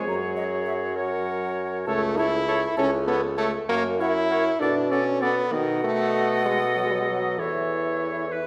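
In a straight 6/8 at 65 BPM in A major, this cheerful, graceful classical-period movement for wind quintet, cut from a longer piece, sets an airy, soft-attacked silver concert flute with vibrato on the melody in the background above a clear oboe second line and a bright clarinet accompaniment, while a French horn with light vibrato accompanies and a present bassoon carries the bass, both up front, the quintet heard from further back in a wet recital hall.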